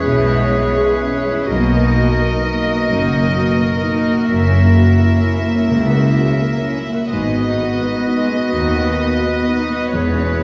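Rubato at 85 BPM in 4/4, this bittersweet, moving cinematic passage in G# minor lets a soft, floating violin section carry the melody over E6, Bmaj7, F#7 and G#m7 chords, with clarinet, punchy oboe, an airy hollow flute group and an intimate chamber violin section weaving second lines, a dark background piano, lush woody violas and very quiet mellow French horns filling the middle, and bowed double basses and distant cellos entering at 0.1 s beneath a wet recital-hall reverb heard from further back, all touched by vinyl crackle.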